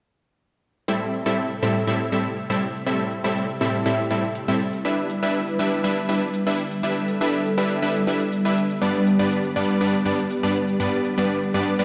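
Progressive house at 121 BPM in A minor, this bittersweet, driving passage is cut from a longer piece and moves through Am7, Em7 and G. A punchy supersaw stab sits up front, its bright, detuned sawtooth tone carrying an airy noise layer, a filter pluck and a tape echo across a range from G2 to E5. Beneath it, a soft-attack analog pad holds sustained chords between C3 and B4, its smooth, chorused sawtooth character shaped by a filter sweep throughout. Electronic hi-hats stay in the background, layered and polished, with a low-pass filter taking the edge off. All three parts play together from 0.9 to 11.8 seconds, bathed in a lush hall reverb of 2.2 seconds, with the sound of a big system playing in a bare room.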